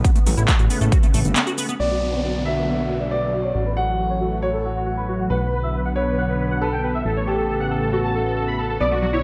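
This driving, bittersweet uplifting trance passage in B minor at 137 BPM opens on a punchy kick with metallic hats, handclaps and shaker, a fat detuned sawtooth bass, a lush chorused and phased pad with sidechain pumping, and a squelchy, resonant acid arpeggio under a filter sweep, before a brief break. At 1.8 seconds the kit drops away and a huge, compressed supersaw lead carries the melody through a sweeping low-pass filter and digital delay, joined by a boxy grand piano second line and an electronic downlifter. The chords move from Aadd9 through Bm and F#m7/A before the acid arpeggio returns at 8.8 seconds, all set in a dark production with a moderate digital room reverb.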